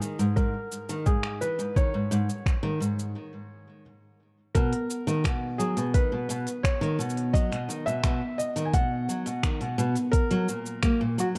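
A straight 4/4 pulse at 86 BPM drives this delicate folktronica excerpt in B major, tuned slightly flat to A4 = 437 Hz. A soft electronic kick sits up front from 0.4 seconds, while an organic electronic kit adds cabasa, finger snaps and crisp hi-hats with the close feel of a small room. A picked steel-string acoustic guitar, set forward in an auditorium-like space, plays low arpeggios with digital delay. Above it, a felt-muted upright piano carries the melody between F#4 and G#5, its mellow, intimate tone marked by thin felt and audible action noise, also touched with digital delay. The harmony opens on C#sus2, pauses for a break at 3.2 seconds, then settles onto B at 4.6 seconds before moving to F#. Light reverb and a dark, warm production frame this short passage cut from a longer piece.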